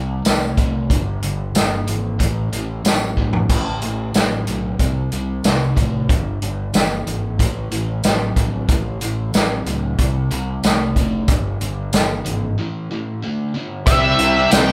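A sludgy, double-tracked overdriven guitar riff and a growling, bright fingered bass open this sunny, confident classic rock cut at 92 BPM in a straight 4/4, joined at 0.2 seconds by a punchy, up-front vintage drum kit with hi-hat, snare, toms, splash cymbal and tambourine, all circling chords on C, G and A with a brief D near the turn. After a drum fill near 3.2 seconds and a break before the section closes, a dark, fuzzy octave lead guitar with wah leaps forward at 13.9 seconds. It arrives alongside a raw garage guitar riff, a mellow baby grand piano with audible action noise in the background, and a very quiet metallic cowbell, all in a live-room sound with light reverb.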